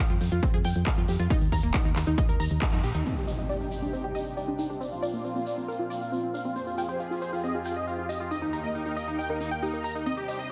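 A huge, detuned supersaw lead arrives at 3.1 seconds in this euphoric, bittersweet slice of uplifting trance at 137 BPM in straight 4/4. It sits up front with sidechain pumping, delay and a filter sweep as it carries the melody over Cmadd9, Bbadd9, Fmadd9 and Eb, joined by a lush, nasal unison pad holding sustained chords with chorus and the same pumping, while an electronic impact marks the change. A tight sequenced synth arpeggio runs from the very start through the whole passage, its filter-plucked sawtooth tone coloured by chorus, cassette tape character, delay and pumping, and it is also swept by a filter once the lead enters. The opening bars are driven by a punchy electronic kick, a round, dark FM bass and a tape-warm techno kit of smooth hats and handclaps, which fall away just before the lead's entrance after a band accent at 2.6 seconds. A grainy egg shaker, distant as if heard in a large room, sounds throughout, and the mix carries light reverb with the tuning set at A4 = 439 Hz.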